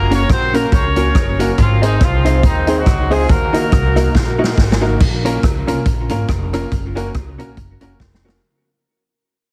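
Ska with a swinging, energetic and mischievous feel, this short excerpt opens with a clear, vintage horn section carrying the melody in octave doubling with light vibrato and tape echo until 4.6 seconds. Beneath it, a woody pizzicato upright bass, a dark hollow-body jazz guitar in the background with tape echo, and a warm upright piano playing stabs move through Gb, Ab and Ebm chords, driven by an up-front big-band drum kit with punchy kick, dark cymbals and rim clicks. A drum fill at 4.2 seconds leads into a new section over Bbm and Gb that fades out, all in a small room with a heavily compressed, radio-like sound.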